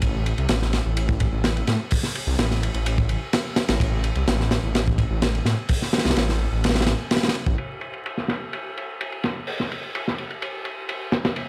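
A thick, menacing detuned saw bass and a crunchy, gritty breakbeat kit with a punchy kick, dark low-pass-filtered cymbals and a rolled-off top open this energetic, funky 127 BPM breakbeat cut, both up front in a dry mix dusted with vinyl crackle, until the bass drops out at 7.5 seconds and the drums carry on alone to 11.5 seconds.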